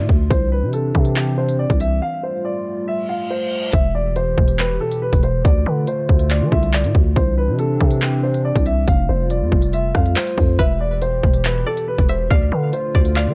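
Drill-style hip hop at 140 BPM in a half-time feel, this ominous, menacing excerpt sits in E phrygian with a dark, dry production. A boxy, mellow grand piano carries the melody through a low-pass filter and digital delay, over a deep, detuned analog pad holding sustained chords with lush chorus. A growling, buzzy 808-style bass sits up front beside an electronic drill kit of hard-clipped kick, crisp hi-hats, handclaps and rim clicks. The opening break moves from Cadd9 to Fadd9, and a reverse cymbal at 3.1 seconds leads into the main section, where the chords move through Em, Dm, Cadd9 and Fadd9. From 10.6 seconds a twangy, string-like resonator pluck adds a bright second line, treated with chorus, phaser and digital delay.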